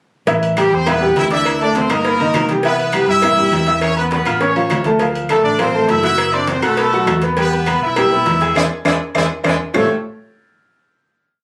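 A bright, close-miked horn section sits up front with loose, pop-style hook phrases, partly doubled in octaves, in this fiery, driving salsa piece at 203 BPM in A minor. Beside it, a clear, boxy baby grand piano plays a montuno in octaves, while a dark, round hollow-body electric bass carries a tumbao that anticipates the chords. Behind them, ringing agogo bells and timbales play a shell pattern and bell, claves keep a woody two-bar time line, and round, low-tuned bongos in steady eighths join a hand-held cowbell. Very quiet, thin-skinned congas add slaps and open strokes with a vintage, band-limited tone. The piece is a mambo of horn riffs over chords such as Am9, Cmaj7 and Dm9, with a band accent from 8.6 seconds and a drum fill from 8.9 seconds leading to a final A7alt chord at 9.7 seconds. It was captured on a phone in the room, with club ambience, moderate reverb and compression giving it a live feel.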